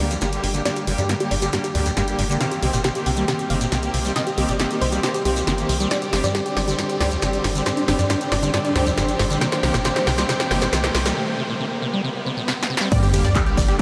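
Opening at once on a detuned unison pluck melody under a filter sweep, earthy chamber strings holding chords, a squelchy acid bass arpeggio with phaser and delay, a tight sequencer bass, a tape-warm analog drum machine rolling through a fill and a grainy, distant shekere, this euphoric, emotional uplifting trance build-up in C minor at 137 BPM pumps through a dreamy wash of huge reverb as a background riser climbs from 9.1 seconds into a break, then lands at 12.9 seconds on an overdriven, up-front kick, a sub drop and a very quiet supersaw stab.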